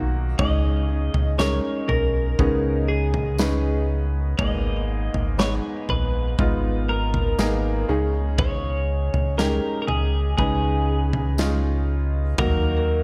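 Upright piano, fingerpicked steel-string acoustic guitar and a deep sine sub bass open this slow, melancholic pop ballad at 60 BPM, the woody piano carrying audible action noise and long sustain while the dark acoustic guitar sits in the background with finger squeak beneath the up-front bass. From 0.4 s a bright, twangy twelve-string electric guitar takes the melody with tape echo as a punchy acoustic drum kit enters, and a distant, jingly tambourine joins at 1.4 s. Chords move through Dbsus2 and Abmadd9, and light reverb with small room ambience gives this cut from a longer piece a dark, longing, intimate feel.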